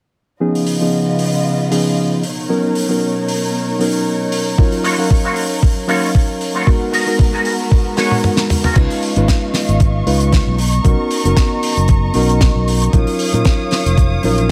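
With light reverb over a mellow, reedy electric piano that is low-pass filtered and sidechain-pumped, this groovy, cosmic nu-disco excerpt at 115 BPM with a swung 16th feel moves through Db9, Bmaj9, Ebm9 and Abm9 chords. It is layered with dark, woody bowed strings with vibrato that also pump, a dry, damped 70s drum kit with a fat snare and crash, hi-hat and toms, and a thumpy, sampler-style electronic kick up front from 4.6 s. A twangy, clean envelope-filtered guitar riff with chorus and delay runs from 4.8 s until a drum fill leads into a growly, amped fingered bass at 8.8 s.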